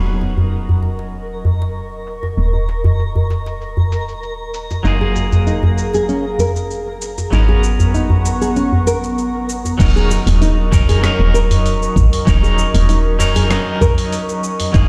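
Meditative and warm, this organic downtempo passage, cut from a longer piece, settles into a straight, unhurried groove in a reverberant stone room. A twangy electric guitar at the edge of break-up carries the accompaniment through tremolo, tape echo, a low-pass filter and sidechain pumping. A warbling, nostalgic pad holds lo-fi sustained chords with chorus and its own reverb. A soft, woody FM bass and a close, dry djembe played with soft hands sit alongside a dusty, gritty sampler-style kit of cabasa, crash, hi-hat and rim click, with filter sweeps shaping the drums and electric guitar over the first part. A faint, sparkling granular texture twinkles in the background, and a full-bodied nylon-string guitar joins with fingerpicked arpeggios and tape echo at 4.8 s as the harmony moves from Ebm7 through Gbmaj9 and Abm11. At 9.8 s the chords return to Ebm7 and a thumpy, compressed electronic kick arrives to anchor the second section.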